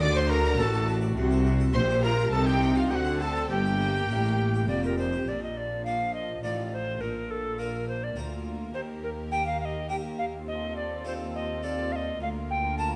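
Steeped in a wet recital-hall reverb, this dramatic, driving baroque-style concerto movement in 3/4 puts an airy, chiffy alto recorder up front on the melody, joined by an expressive violin section on the melody and a second violin section on a supporting line, with a brilliant harpsichord and a background viola section filling the accompaniment, while a clear, intense double bass section up front and a lush cello section carry the bass, moving into a new section at 5.3 seconds.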